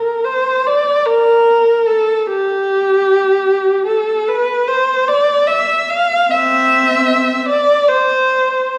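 Meditative and mournful, this short classical fragment, cut from a longer piece, features a single unaccompanied bowed viola, warm and up front with expressive vibrato and portamento, ranging from C4 to F5 in a free rubato 3/4 around 75 BPM, tuned to A4 = 439 Hz and bathed in the wet 1.5-second reverb of a recital hall for its full 8.8 seconds.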